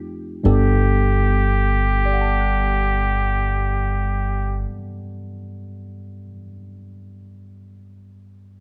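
A barky, clean tine electric piano through a combo amp and a woody, thumpy pizzicato upright bass open this tender, late-night, swung jazz ballad excerpt, settling on a Gmaj9 chord at 0.4 seconds, joined at 0.5 seconds by a punchy, vintage plunger-muted trumpet solo with wah-wah and vibrato; by 4.7 seconds the bass and trumpet have stopped, and the up-front electric piano carries on alone until 8.6 seconds under light reverb and close, detailed microphones.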